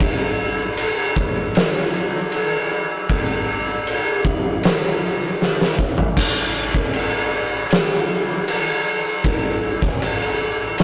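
Ominous and brooding, this short metal fragment moves at a heavy 78 BPM in a straight 4/4. An oversized, low-tuned acoustic drum kit carries the whole piece, sitting up front, with a punchy kick, a fat snare, toms and dark crash cymbals filling a bright stone room that pumps around the hits. A drum fill from 5.4 to 6.2 seconds marks the shift into a new section that runs until the cut at 10.8 seconds. The sound is a rough rehearsal-room take with tube saturation and a light reverb, giving the kit a raw, gritty weight.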